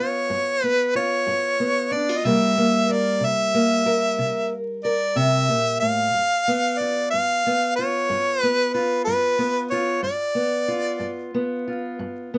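A clear, close-miked harmonica and a dark, boxy fingerpicked parlour guitar begin together on G7 in this soulful, laid-back acoustic country blues, moving unhurriedly in 12/8 at 62 BPM in G mixolydian. Both sit up front: the harmonica carries a jazz-inflected solo melody with light vibrato and scooped notes over the guitar's accompaniment through C7 and back to G7. The harmonica stops at 11.3 seconds, leaving the guitar alone until the cut at 12.4 seconds, all framed by a moderate booth ambience and a layer of vinyl crackle.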